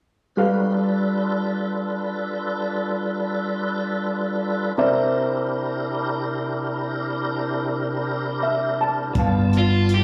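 A lightly overdriven tonewheel organ anchors this gritty, laid-back slow blues at 55 BPM in 12/8, its full sustained chords carrying chorus vibrato, key click and a slow rotary speaker, while a polished grand piano with slapback echo accompanies over G7 and C7 and adds a fill before the change to G9. Brushed drums with a boomy kick enter at 9.1 s, a round, amped fingered electric bass sits up front from 9.2 s, and a dark, overdriven picked lead guitar with slapback echo comes in at 9.6 s. It sounds like a live gig heard through the venue's PA, wrapped in a lush hall reverb, and this excerpt is cut from a longer piece.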